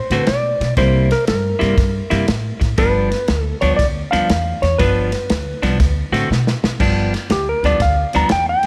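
A swung 4/4 shuffle drives this laid-back, rollicking electric blues fragment, where a dark, clean lap steel sings the slide melody over a compressed, picked electric guitar riff bathed in spring reverb, a woody, thumpy pizzicato upright bass and an up-front studio drum kit with a punchy kick and bright cymbals, moving through D7, C7 and G7 until a drum fill at 6.3 seconds launches an electric slide guitar solo at 6.8 seconds.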